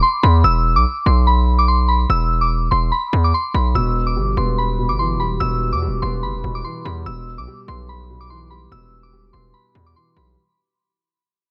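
A small-room recording fades out across its full 10.4 seconds in this cold, ominous drill cut, set at 145 BPM with a half-time feel in E minor and tuned to A4 = 438 Hz. A pure, chorused FM synth bell carries the high melody, filtered and up front, over a saturated, aggressive 808-style bass that arrives at 0.2 seconds. A dark, boxy concert grand piano joins on an E minor chord at 3.8 seconds, its filtered low accompaniment also sitting up front in the mix.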